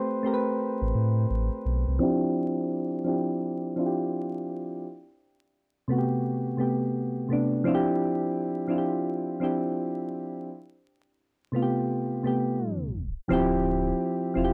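Hazy and nostalgic, this short lo-fi hip hop excerpt moves at 85 BPM with a swung 16th-note feel, as soft, round electric-piano-like synth keys carry the accompaniment throughout, their mellow chorused tone shaped by a low-pass filter that sweeps from 2.0 to 13.3 seconds over chords alternating between Am9 and Dm11. A deep, full sine sub bass with an added octave sits up front, appearing only briefly at 0.8 seconds and again at 13.3 seconds. Vinyl crackle and a small, reverberant room lend a dusty intimacy, and a tape stop at 12.6 seconds leads back into the opening material.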